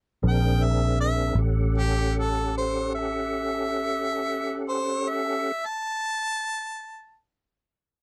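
Laid-back and soulful, this brief fragment of a slow 12/8 blues in A mixolydian moves at 52 BPM with a straight feel, opening on a stop and a slowdown across the first 1.4 seconds while the harmonica takes a solo. The harmonica carries the melody up front with a jazz-style voice, light vibrato, scooped notes and a smooth top, lasting until 7.2 seconds. Beneath it, a fat tonewheel organ holds sustained chords with light overdrive, chorus vibrato, audible key click and a slow rotary speaker. A dark, foam-muted electric bass anchors the low end with a round, punchy tone sitting close in the mix. The harmony shifts from Bb9 to A6 at 1.4 seconds, and the dry, close 1970s-style studio sound, with little reverb, keeps every part intimate.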